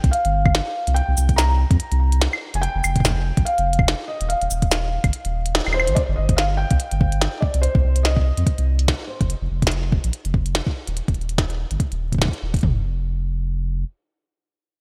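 The recording has a bright, 1980s-style digital sheen, with light reverb and a digital ambience wrapped around this eerie, glitchy IDM piece, which is cut from a longer track. At 144 BPM in 4/4, the sixteenths swing slightly, and two electronic drum kits sit up front with a tape-warm character: one carries a soft kick and toms, while the other adds a tiny snare, clicky hi-hats, cabasa and claves. Beneath them, a deep, round sine sub bass with a fast attack and sustained notes holds the low end, also placed up front, and it is the last part sounding, lasting until 13.8 s. A felt-muted upright piano plays the melody in a soft, dark, intimate voice, with audible action noise, subtle chorus and digital delay, before falling silent at 9.3 s. The harmony moves through suspended chords such as G7sus4, Fsus2 and Ebsus2, later settling on C minor between unharmonised stretches. A band accent lands at 5.5 s as the kick briefly drops out, marking the turn into the next section.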